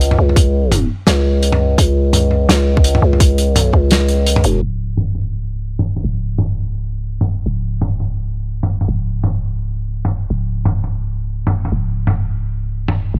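Half-time drum and bass at 169 BPM with a swung sixteenth feel, this tense, heavy excerpt is cut from a longer piece and built on a growling, buzzy 808-style bass that sits up front and spans C#1 to C#2 with a fast attack and decaying tail. A soul drum kit with a small-room, mid-forward sound and rolled-off top plays hi-hat, medium-tuned snare and toms through low-pass filtering, joined by a hard-clipped electronic kick that punches in at 0.4 seconds and drops out at 3.9 seconds. From 4.6 seconds a filter sweep moves across the drums, and the whole mix stays dry and darkened by a low-pass filter.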